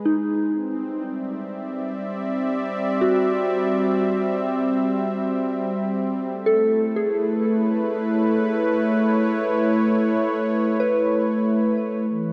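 A smooth, detuned sawtooth analog pad with chorus sits up front from the first moment, holding slow-attack chords that move from Cmaj9#11 to Amaj7 at 6.3 seconds, while a pure, gentle FM synth bell joins at 0.1 seconds with decaying arpeggios softened by chorus and a diffuse ambient delay, all in a weightless, peaceful ambient passage at 62 BPM in 3/4, cut from a longer piece and set in a vast, echoing cathedral reverb.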